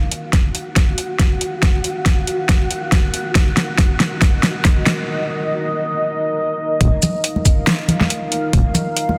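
A deep, dark ambient pad opens this meditative deep dubstep excerpt, its detuned sawtooth chords warbling with chorus and a vintage haze while a filter sweep moves through it during the build-up. A breathy, wind-like tuned noise texture drifts in almost at once and drops out at 5.1 seconds, as a drum fill from the layered deep house kit carries the opening with metallic hi-hats, shaker and a fat, softly clipped snare. Underneath, a muffled, pitched-down electronic kick thumps up front with overdrive, the groove sitting in a swung, half-time feel. At the drop at 6.8 seconds a heavy square-and-sine wobble bass arrives, saturated and mellow, alongside bright, damped acoustic congas trailing dub echo. The dense, heavily limited master keeps the dark mood close and heavy, with only light reverb around it.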